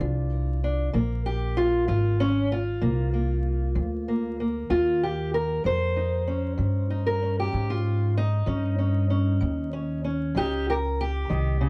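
Blues in a slow 12/8, this short cut from a longer piece feels soulful and rollicking. A fingerpicked steel-string acoustic guitar carries the melody throughout as a solo, its parlour-sized voice dark and boxy, sitting up front. Beneath it, a pizzicato upright bass on steel strings gives a woody, growly, thumpy foundation, also close and present. The harmony moves from Bb7 to Eb7 at 4.7 seconds. The sound is a dry, close 1970s-style studio recording with little reverb and a layer of vinyl crackle.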